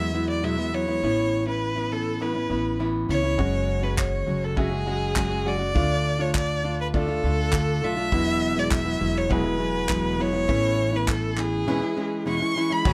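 A straight 4/4 pulse at 101 BPM carries this heartfelt, sunny acoustic pop excerpt in A major, cut from a longer piece, with a focused, bowed solo violin singing the melody up front with vibrato over a full-bodied, fingerpicked nylon-string guitar and a woody, growly pizzicato upright bass. At 3.4 seconds a loose indie drum kit joins with a tight kick, handclaps and crash cymbal in a small-room sound with a rolled-off top, while a smooth, vintage grand piano with short sustain sits in the background. Moderate studio reverb surrounds the parts as the harmony moves from Eadd9 and Aadd9 through F#sus2 and a darker D minor before settling back toward Aadd9 and E6.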